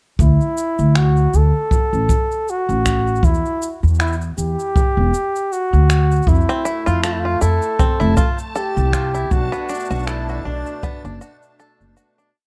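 Folktronica with a playful, delicate mood at 79 BPM in D major, where a breathy, close-miked flugelhorn plays jazz-style hook phrases with scooped notes over woody pizzicato upright bass in a dotted rhythm, a soft, boomy kick played with brushes, and a clicking found-sound beat of electronic shaker and finger snaps. From about 6.3 seconds a reedy musette accordion adds shimmering sustained chords in the background, and fingerpicked bluegrass banjo joins with twangy arpeggios. At 7.6 seconds a reversed, granular swell holds a detuned high note, and the piece fades out from 8.3 seconds.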